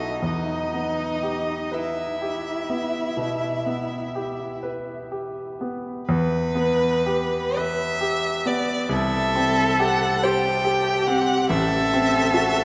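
In a flexible, rubato 12/8 sway, this solemn, yearning slow movement for piano trio unfolds as a short passage cut from a longer work, with all three players sounding together from start to finish. A focused violin sings the melody up front with vibrato, while a rich, smooth cello carries a second line beneath it. A polished concert grand with deep bass and short sustain supplies the accompaniment over Em, C and F#m7b5/A harmonies, all bathed in the long reverb of a vast cathedral.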